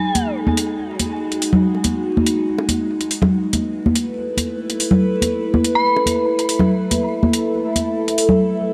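Deep dubstep in a half-time feel, this short excerpt from a longer piece carries a meditative, heavy mood. An overtone-sweeping drone of sawtooth and sine tones holds sustained chords up front throughout. Its resonant, slowly blooming sound is coloured by chorus, phaser and its own reverb, with a filter sweep moving across it. A dark, detuned synth bell, eerie and inharmonic with a full-bodied FM tone, sounds brief melodic notes at the very start and again at 5.8 seconds, trailing chorus, tremolo and dub echo. Metallic, tape-warm electronic hi-hats sit up front in a small room reverb, alongside bright, close acoustic congas and bongos carrying dub echo, all over a bed of vinyl crackle in light reverb, until a brief break arrives at 8.4 seconds.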